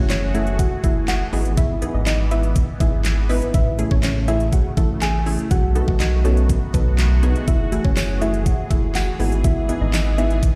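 Heard through a big sound system in a bare room with a large studio reverb, this confident, driving dance-pop excerpt moves at 122 BPM in F# dorian over chords that cycle from F#m9 through Emaj7/G#, Amaj7 and B7. A fat-snared, crisp-hatted electronic drum kit with knocking kick and handclaps sits up front beside a deep, dark analog bass, while sidechain pumping breathes through the bass, the punchy, nasal sawtooth chord stabs and an airy, evolving resonant pad with chorus. A soft triangle-and-sine pluck carries the melody through dub echo, and a faint jingly acoustic tambourine joins at 8.0 s.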